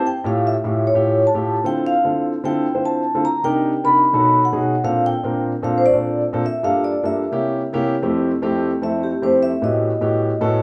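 Danceable and sophisticated, this straight-feel jazz clip from a longer piece sets a vibraphone melody, played with medium mallets and carrying a dark, ringing metallic tone with a slow motor vibrato, over a concert grand piano accompaniment with deep bass, long sustain and an up-front presence. The piano moves through rich extended chords such as Dm7, Bbmaj9 and C7b9, and at 8.0 s the vibraphone takes a solo over Fmaj9 and A13. The two instruments sound like a band playing live in one large studio room, bathed in a wet reverb with a softened, dulled top end.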